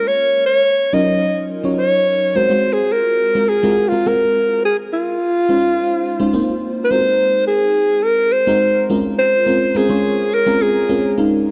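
A breathy alto saxophone and an FM electric piano layered with a soft pad begin together, setting a bittersweet, slick pop mood at 105 BPM in a straight 4/4, tuned slightly low to A4 = 438 Hz. The saxophone carries the melody up front in an intimate, jazz-style solo, its whispered tone, soft attack and vibrato sitting between F4 and Eb5. Alongside it, the electric piano, also up front, supplies dreamy accompaniment with fast-attack, decaying notes, a detuned, triangle-like edge, a noise layer and a lush chorus. The harmony moves through Ebm9, Ab13, Dbmaj9 and F7sus4, then shifts at 6.9 seconds into a second section built on Ab9 and Bbm9. The saxophone stops at 11.2 seconds while the piano carries on to 11.5 seconds, and a moderate plate reverb wraps the dark, warm production of this excerpt cut from a longer piece.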